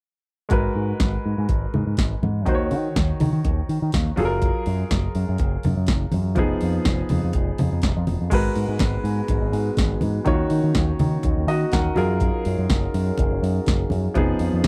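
Disco at 123 BPM in G# dorian, sultry and danceable, built on an electro analog drum machine with a deep kick, punchy snare and metallic hats, a bright picked electric bass run through an envelope filter, and a clear grand piano, all up front, with low-tuned congas set in the background. The chords move through G#m9, D#m7, F#maj9 and Fm7b5, and at 8.3 s a mellow French horn section joins with sustained chords carrying light vibrato. The sound is dry and close, like a 1970s studio recording, in this short cut from a longer piece.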